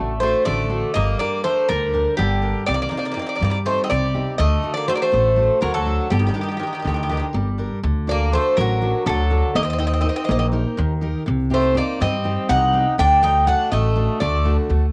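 In a straight 7/8 groove, this dramatic, tense slice of Greek folk sets a bright, metallic double-strung bouzouki melody up front over a second bouzouki line, a full-bodied jumbo steel-string guitar picking the accompaniment and a woody pizzicato upright bass, also up front, in a home cassette recording with light reverb that shifts into a new section at 7.8 s.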